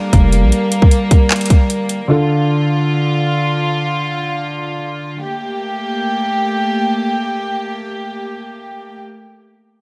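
A close studio sound with light reverb frames this eerie, melancholic hip hop and trap excerpt. A trap drum kit hits hard and up front with handclaps, metallic hi-hats and a hard-clipped electronic kick, paired with a brief 808-style bass that is punchy, heavy and sine-based, with a noise layer and a fast attack that then decays. The drums drop out at 2.0 seconds, leaving a dark, mellow grand piano with a slightly boxy tone to carry the accompaniment until 5.2 seconds. Alongside it all, a warm, bowed studio string section holds soft-attack sustained chords, played sul tasto with a pure, floating ensemble tone that stays up front through to 9.0 seconds. The harmony moves from Gmadd9 to Dm and back to Gmadd9, keeping the mood suspended and somber.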